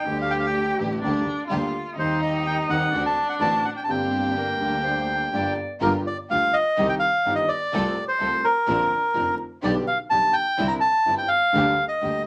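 Tango in G minor at 126 BPM with a rubato feel, tense and passionate, this cut from a longer piece puts a reedy, smooth bandoneon up front on the melody over a boxy concert grand piano with deep bass and long sustain, a woody bowed double bass with vibrato, and lush, focused string-section stabs sitting in the background. A warm, bowed cello with expressive portamento carries a second line until 4.8 s, and a solo clarinet with a smooth top adds a brief classical-style phrase from 4.4 to 5.8 s. Wet studio reverb and vinyl crackle frame the sound, while the chords move from Dsus4 through D7 to Gm before a second section opens on Gm7 at 5.8 s.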